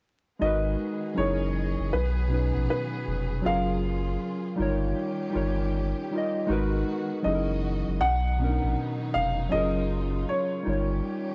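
A swung sixteenth-note groove at 79 BPM in 4/4 anchors this reflective, hazy hip hop excerpt, cut from a longer piece. A dark, woody upright piano carries the melody in a mellow, short-sustained voice, while warbling lo-fi synth keys, detuned and nostalgic with chorus and cassette-tape colouring, sit up front as accompaniment. Beneath them a saturated sub bass, deep and thick with a fast attack, holds the low end until 11.0 seconds, and a studio string section lays down sustained, bowed chords with vibrato and portamento, set further back in the mix. The harmony cycles through G#m9, F#13, B, F#maj7 and D#7/G, returning with a Bmaj7 on the second pass. Light studio reverb softens the sound, but the recording stays dry and gritty, with vinyl crackle running under it all.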